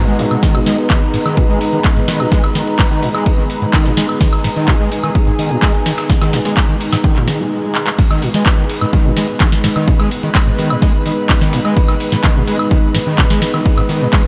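This raw, gritty acid house excerpt opens on a lush, detuned unison pad holding sustained chords with chorus, beside an overdriven acid bass riff that sounds squelchy and resonant, its sawtooth tone distorted and sweeping through a filter with tape echo and ensemble chorus. A nostalgic, lo-fi tape-like pad warbles in the background with its own built-in reverb, while a booming analog drum machine brings metallic hats, a tonal snare, claps, shaker, woodblock and crash, all sounding re-recorded in a small room. A dry, punchy electronic kick sits up front with overdrive, and a dusty soul sampler-style kit adds a compressed ride cymbal and medium-tuned snare far back in the mix, with the pads, bass and that kit's cymbals pumping against the beat. Near 7.3 seconds a very quiet electronic swell enters. The track briefly stops at 7.5 seconds as the tape-like pad falls away, and a drum fill lands at 7.8 seconds. 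The drop arrives at 8.0 seconds, and the whole dreamy mix is soaked in a moderate cathedral reverb.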